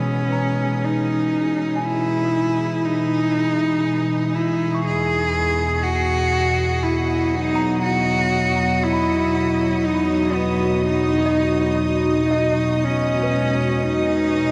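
A huge, wet reverb with a 7.8-second tail soaks this dreamy ambient excerpt, and lossy compression artefacts cling to its edges. At 60 BPM in a slow 3/4 with a straight feel, the mood is weightless and peaceful, tuned slightly sharp to A4 = 441 Hz and moving from Emaj7 to B/E at 4.9 seconds. Up front, a focused solo cello carries the melody with bowed vibrato and a touch of delay, while a warbling, tape-like pad holds dark, detuned, nostalgic chords with chorus and a slow attack. Further back, a small celesta traces bell-like arpeggios with delay, and a chamber violin section adds an earthy, biting texture with light vibrato and a smooth top. Both the celesta and the violins fade in across the whole 14.5 seconds, gradually filling out the space behind the cello and pad.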